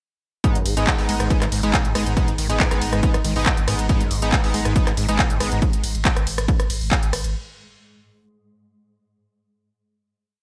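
Bright 1980s-style digital production with light reverb frames this short, intense and dark piece of driving peak-time techno in G# minor at 139 BPM, one continuous drop from 0.4 seconds in which a punchy, up-front four-on-the-floor electronic kick and a tape-warm programmed kit of handclaps, smooth hi-hats, ride cymbal and rim clicks with gated reverb drive over a deep, saturated sub bass that pumps and rumbles between the kicks, while a squelchy, gritty overdriven acid bass line with accents and slides sits in the background, edgy, nasal oscillator-sync polysynth stabs play dotted-rhythm chords in one shape moved in parallel, and from 2.0 seconds a very quiet swarming, detuned granular drone hovers beneath.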